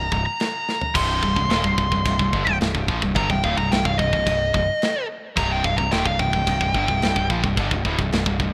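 Heavy metal in C minor at 109 BPM, this heavy, aggressive fragment from a longer piece opens on a C minor chord with an up-front, high-gain lead guitar solo whose warm, delayed tone carries the melody until 7.3 seconds. Beneath it, a scooped guitar riffs in the background alongside two very quiet distorted rhythm guitars, one of them double-tracked and joining at 0.9 seconds. A growling, overdriven picked bass and a tight, up-front drum kit with china and crash cymbals drive the riff, the drums breaking into a fill at 0.7 seconds, all in a rough home-demo mix with light reverb.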